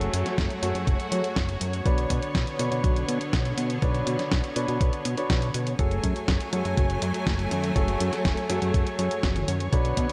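Bittersweet and melodramatic, this short cut from a longer italo disco track moves at 122 BPM in a straight 4/4, set in F# minor and tuned slightly below standard pitch. A clear, lush studio string section holds sustained bowed chords with vibrato, moving from F#madd9 to Bmadd9 at 1.9 seconds and back to F#madd9 at 5.8 seconds. A natural-sounding baby grand piano adds stabs through a digital delay, while a fat analog bass, thick and saturated with detuned sawtooth and square-wave tones and a filter sweep, carries the low end with its own delay. A clean 12-bit digital drum machine supplies hi-hat, a fat snare and toms from the start, and a thumpy, sampler-style electronic kick joins at 0.4 seconds as the most prominent part. Light reverb and digital ambience surround the mix.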